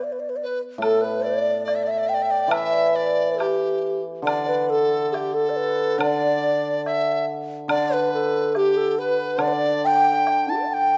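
Close, detailed microphones place this festive, graceful Chinese chamber music in a moderate recital hall reverb, a passage cut from a longer piece moving at 70 BPM in a straight 2/4. A mellow, hollow low xiao carries the melody from the start, its airy bamboo tone touched with vibrato, and a large dizi enters at 0.4 seconds with a pure, buzzing second line. From 0.8 seconds a shimmering, ringing hammered dulcimer adds low accompaniment while a close, dry woodblock plays percussion until 10.5 seconds.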